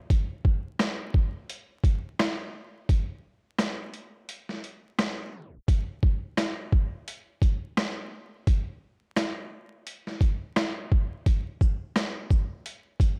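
A compressed, sampler-style boom bap drum kit sits up front in this moody, gritty hip hop excerpt at 86 BPM with a 16th-note swing, its thumpy kick, high-tuned snare, rim click, hi-hat and shaker running from 0.1 to 13.2 seconds through a dry hardware sound coloured by transformer saturation and vinyl crackle, broken by a short pause that ends in a tape stop at 5.3 seconds before the pattern returns.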